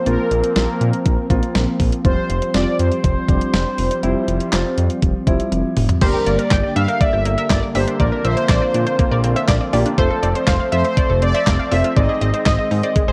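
A worn cassette-tape sheen with warbly pitch drift and light reverb colours this wistful, nostalgic synth-pop fragment, cut from a longer piece and moving at 121 BPM in a straight 4/4. An overdriven, sampler-style drum machine sits up front with a thumpy kick, medium-tuned snare, handclaps, hi-hat, toms and crash, joined by a smooth, warm synth bass that holds the low end. Over them, a bold, fat analog synth brass carries the melody with chorus and vibrato, while a sweeping resonant pad with a slow attack and filter swell sustains chords in the background and a dark, short-sustained grand piano adds accompaniment. A drum fill at 5.5 seconds leads into the second section at 6.0 seconds, where a bright, vintage analog pluck with chorus and digital delay adds a second line and a lush, detuned unison pluck spins arpeggios further back in the mix. The harmony moves from Bbsus2 and Fsus2 through Gm, Bbadd9 and F before turning to Ab at the end.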